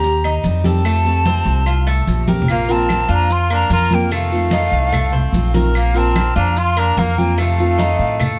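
A straight 4/4 groove at 147 BPM drives this sunny, danceable Cuban son and guajira excerpt, carried by thick-skinned congas played with hard hands, a growly, thumpy pizzicato upright bass up front, and grainy maracas and woody claves sitting in the background, with a drum fill at 2.3 seconds. A breathy, hollow jazz flute with vibrato carries the melody over bright, boxy picked steel-string acoustic guitar and metallic double-stringed Cuban tres arpeggios, moving through chords like Cm, Fadd9, Bbsus2 and F7. At 2.5 seconds a clear, punchy trumpet enters with a second line, all captured with close, detailed microphones and light reverb.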